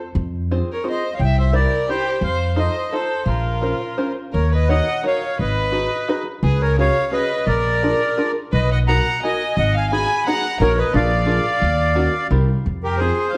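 A pizzicato upright bass opens this rubato musette waltz in 3/4 at 173 BPM, joined by a twangy fingerpicked banjo and then a reedy, up-front accordion carrying the nostalgic, bittersweet melody over a clear, biting violin second line, moving from Bb minor into Eb minor at 4.3 seconds within a moderate recital-hall reverb and a dark, warm production, in an excerpt cut from a longer piece.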